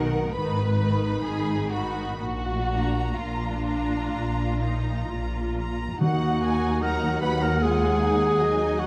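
A slow romantic classical movement for symphony orchestra, elegiac and melancholic, moving with a rubato feel as the violin sections carry a lush, vibrato-laden melody and second line over a rich, close viola accompaniment. Beneath them the double basses, soft in attack, and the distant cellos hold the low end with expressive portamento, all set in a moderate scoring-stage reverb. At 6.0 seconds a bright, up-front solo clarinet enters with its own line, and the timpani, struck with medium mallets on calf heads, sound from 6.0 to 7.2 seconds before this brief fragment of a longer piece breaks off.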